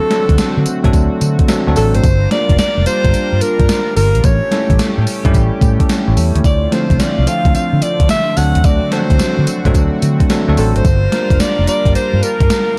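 A swung 16th-note groove at 109 BPM in 4/4 drives this bouncy, confident new jack swing excerpt in D minor, built on a gated 80s drum machine with a thumpy kick, overdriven gated-reverb snare, hi-hat and tambourine sitting up front, alongside a round, foam-muted fingered electric bass. A bell-like tine electric piano and a shimmering, chorused pulse-width pad with a slow attack supply the chords, moving from D7 through Gm7 and A7 to Dm7. Over them a clear alto saxophone carries the melody in a jazz style with light vibrato and scooped notes, all in a dark, dry production.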